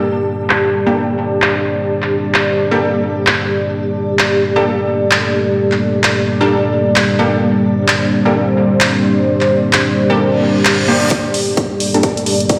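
A swung, bouncy 130 BPM bass house groove in G minor opens this swaggering excerpt, where a dark, moody analog pad with chorus and sidechain pumping holds sustained chords under a filter sweep, bold sawtooth orchestra-hit-like stabs ring with dub echo, a cloudy granular pad drifts above, an up-front big-room dance kit of handclaps and hi-hat drives from 0.5 seconds, a reverse cymbal rises at 10.3 seconds, and a tight electronic kick lands at 11.1 seconds for a build-up, all in a lush hall reverb heard through a big system in a bare stone room.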